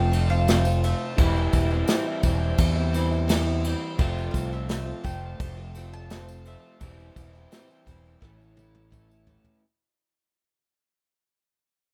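A round, punchy fingered electric bass sits up front in this short, hopeful slice of folk rock and heartland rock, its dark amped tone anchoring a straight, steady 4/4 groove with an open-road feel. Beside it, a soft brush drum kit plays in a small room with a tight kick and a medium-tuned snare, and a close, dry tambourine jingles quietly in the background. A double-tracked, overdriven garage guitar carries a gritty riff, while a picked acoustic archtop guitar adds plate-reverb accompaniment underneath. A double-strung mandolin carries the melody, treated with plate reverb and digital delay, until it drops out at 7.8 seconds, and a reedy tonewheel organ with key click holds sustained chords through a slow rotary speaker further back. The harmony moves from F through C/E before landing on A as a drum fill arrives at 8.2 seconds, all within a rough home-demo mix that fades out across its 9.6 seconds.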